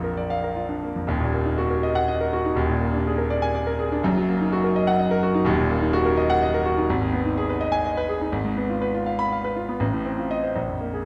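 A solo grand piano opens on a brief Bb chord before settling into Eb minor harmony at 1.1 seconds, launching an agitated, passionate classical piano study cut from a longer work. The piece moves in a lilting compound metre, but the beats fall unevenly and the phrasing bends with expressive rubato, giving the music a restless, searching pulse. Its harmony darkens as it travels through Ab minor and a diminished chord before landing on F7 near 9.8 seconds. The piano sits up front with a clear, smooth, vintage tone and short sustain, spanning Eb1 to Cb6 across the keyboard. A moderate recital hall reverb surrounds it, and the dark production carries a faint mains hum beneath the playing.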